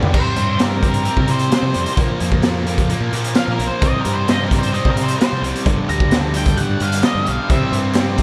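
A small room with light reverb frames this sunny, driving classic rock excerpt, cut from a longer piece. The raw garage drum kit sits up front, gritty and saturated with a punchy kick, dark cymbals and a pumping room sound, while a growling, overdriven fingered bass enters at 0.1 s beneath a pair of bright rhythm guitars, one cranked and overdriven and one distorted, both with slapback echo and placed in the background. Also at 0.1 s, an octave-fuzz lead guitar takes a dark, fuzzy solo with slapback echo over power chords moving from C to Bb, back to C and then G. At 7.5 s, a brilliant concert grand piano with slapback echo, a barely audible tonewheel organ with key click and slow rotary swirl, and a very quiet double-tracked sludgy guitar return. A crisp, band-limited group handclap sounds faintly at 7.9 s.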